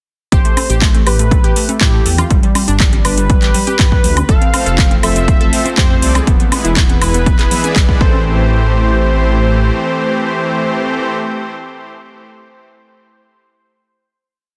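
Progressive house at 121 BPM in A minor, driving and bittersweet, where a thick, bold unison lead with dub echo carries a repeating riff over a warbling analog pluck arpeggiating sixteenths above a pedal note, a deep, rumbling detuned saw bass in a dotted rhythm, a punchy overdriven four-on-the-floor kick up front, a house kit of metallic hats, shaker, clap and woodblock, and background congas, all moving through Am, G, F and E until soft supersaw off-beat stabs join at 4.5 seconds and an airy breathy pad at 4.6 seconds, and the drums drop away around 8 seconds for a final Am7 hit in a dense, heavily limited, nearly dry master.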